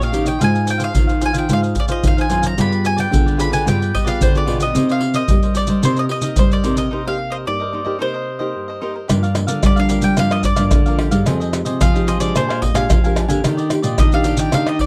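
Samba and choro in a bittersweet yet lively mood, cut from a longer piece, with a bright bowl-back mandolin carrying the melody over crisp picked cavaquinho and a full-bodied, fingerpicked nylon-string guitar, while a second, darker nylon-string guitar handles the bass lines with audible finger squeak. Maracas, pandeiro, tamborim and a deep surdo sit up front with a soft-handed, small-room feel, and a break at 6.9 seconds leads into a new section at 9.1 seconds. The sound is dry and close, in the manner of a 1970s studio recording.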